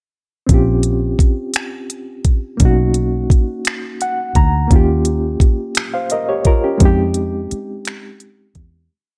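A close, up-front mix sits in a digital ambience, giving this short, whole piece of slow six-eight R&B a late-night, yearning mood. A smooth, electronic drum kit sets the beat with a knocking kick, finger snaps and silky hi-hat, all carrying a tape-warm, produced sheen. A vintage fingered electric bass, dark, round and foam-muted, plays a slow, sliding line studded with muted ghost notes and chromatic approach notes. A bright, reedy electric piano, shimmering with fast tremolo through its built-in speakers, holds rootless chords over a Bbm69, Bmaj9, Eb9 and Fm9 progression and slips in a short fill at 3.6 seconds. The single verse begins fading out at 6.8 seconds and closes by 8.9 seconds.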